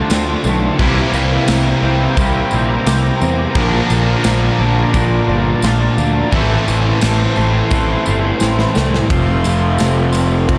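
Dreamy and brooding, this shoegaze and dream pop rock passage, cut from a longer piece, rests on an up-front, overdriven fuzz bass beneath a haze of guitars: a dark, thick fuzz guitar with ensemble chorus, a bright, double-tracked cranked stack guitar, a very quiet raw garage guitar riff, and faint clean arpeggios from a compressed, direct-recorded electric guitar. In the background, a detuned, wave-folded sawtooth pad with a slow attack and chorus holds sustained chords, while a big-room acoustic drum kit with a smooth, dark sound, a punchy kick and crash and ride cymbals drives along with a jingly, close and dry tambourine. A drum fill at 8.4 s leads into the change at 9.1 s, where the stack guitar drops out and the harmony, having moved from Dm7 through C7, Bbmaj7 and Am, settles on F6, all set in a light small-room reverb.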